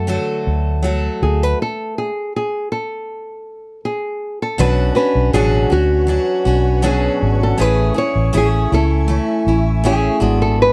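A small, fingerpicked nylon-string guitar carries a carefree melody over a bright, jumbo picked steel-string guitar and a dark, round, foam-muted fingered electric bass, all close and up front in this easy-going acoustic pop excerpt at 80 BPM in 4/4; after a stop from 1.6 to 4.6 seconds, the music moves through Bmadd9 and Amaj7 while an ethereal, mellow pad with ensemble chorus, built-in reverb and tremolo enters softly in the background at 5.9 seconds.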